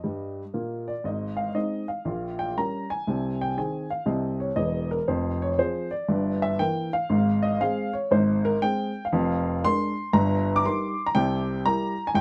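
Stride piano jazz at 119 BPM in a swinging 4/4, this playful cut from a longer piece features a lone upright piano, dark and woody with audible action noise, sitting up front in light reverb as it opens with a fill, moves from Ab major through chords such as Abmaj13 and Gdim/Bb, and shifts to Eb major at 9.1 seconds before closing on C7.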